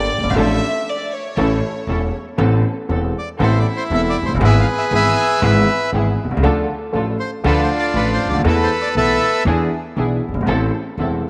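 An intimate, sul tasto chamber violin section with slapback echo opens this passionate, tense, rubato tango fragment over an up-front grand piano, veiled con sordino string stabs in the background and a woody, thumpy pizzicato upright bass, before a reedy, dark, close-miked bandoneon carries the melody from 3.2 to 9.4 seconds, the whole ensemble sitting in a moderate plate reverb.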